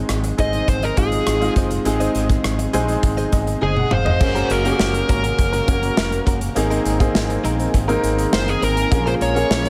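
A clear, up-front grand piano opens this nostalgic, moody 1980s-style pop excerpt with a shimmer-reverb glow, joined almost at once by a punchy studio drum kit drenched in gated reverb, a round, dark fretless bass, and a bright, compressed clean guitar riff tucked in the background behind chorus and tape echo. A dark, overdriven lead guitar carries the melody from 0.4 seconds, and after a drum fill, brassy synth stabs with a filter sweep and vibrato arrive at 4.2 seconds as the harmony moves to richer added-ninth chords. At 8.9 seconds a lush, warbling unison pad slips in very quietly beneath a minor seventh chord, all set in a small, lightly reverberant room.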